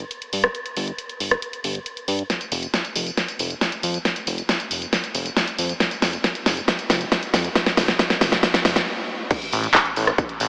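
A straight 4/4 uplifting trance pulse at 137 BPM carries this soaring, emotional fragment cut from a longer piece, where a fat, detuned sawtooth bass with a filter sweep and sidechain pumping sits beneath an up-front big-room kit of crash, handclaps, hi-hat, rim click, tambourine and a huge snare, whose drum fill from 2.3 to 8.9 seconds drives the build-up to a stop, before a punchy electronic kick enters with the drop at 9.3 seconds, all bathed in a huge ambient reverb and an AM radio colour.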